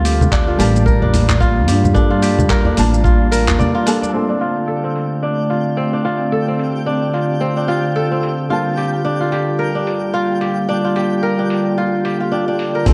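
A crisp, ringing kora plays fingerpicked arpeggios up front through tape echo in this mystical organic downtempo excerpt at 110 BPM with a swung 16th feel, set over a soft felt-muted upright piano and a warbly, nostalgic tape-like pad on Gm7 and Dm7 chords, while a woody pizzicato upright bass and a thumpy electronic kick fall away by 3.6 seconds and a quiet djembe by 4.1 seconds, a gritty, dusty soul sampler-style kit of congas, handclaps, hi-hat and shaker carries on, and a twinkling, sparkling granular texture enters at 4.7 seconds within a dark small-room ambience.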